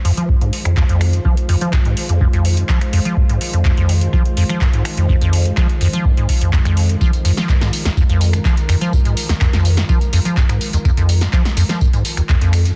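A dense, heavily limited and nearly dry mix frames this gritty, hypnotic acid house passage at 125 BPM in F minor, cut from a longer piece and resting on a single Fm7 chord throughout. Up front, a squelchy, resonant square-wave acid bass plays a riff with tube saturation and analog chorus, while a deep analog electronic kick enters at 0.3 s alongside an electro drum machine of finger snaps, handclaps, metallic hi-hats, tambourine and a punchy, softly clipped snare with a short room on the snare, claps and hats. Lower in the mix, a warbling, nostalgic lo-fi pad of detuned sawtooth and triangle tones holds slow-attack chords with chorus, built-in reverb and sidechain pumping.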